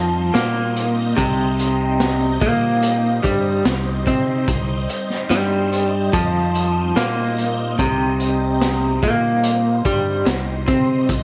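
A straight 4/4 pulse at 73 BPM drives this dark, trippy psychedelic rock passage in C minor, cut from a longer piece and opening on a C minor chord across its 11.2 seconds. A crunchy breakbeat drum kit enters at 0.3 s with a high-tuned snare, punchy kick and hi-hat, its saturated, gritty sound carrying a rolled-off top. Up front, a picked electric guitar through a small old amp plays a low riff, slightly broken-up and lo-fi, with tremolo shimmering over its compressed tone. Beneath it, a fingered electric bass holds the bottom with a round, direct-and-amped sound. Behind everything else, a vintage sawtooth string machine sustains bright, swirling chords with a slow attack and long release, coloured by ensemble chorus and phaser. Light studio reverb gives the mix a modest sense of room.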